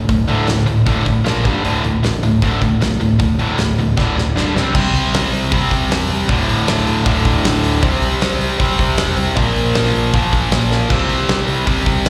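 A small room ambience frames this hard rock recording, which sounds like a live gig heard through the venue's PA with a recital hall reverb around it, cut from a longer piece. The mood is driving and menacing over a straight 4/4 feel. Up front, a tight, bright distorted guitar, picked and double-tracked, drives the riff through power chords on D, Bb, G and C, its tone sharpened by a slapback echo. Beneath it, a picked electric bass sounds growly and amped, adding punch to the low end. The big acoustic drum kit sits mid-forward, with a fat snare, a punchy kick, hi-hat and crash cymbal. A fill at 4.0 seconds marks the turn into the second section, and another arrives at 10.7 seconds.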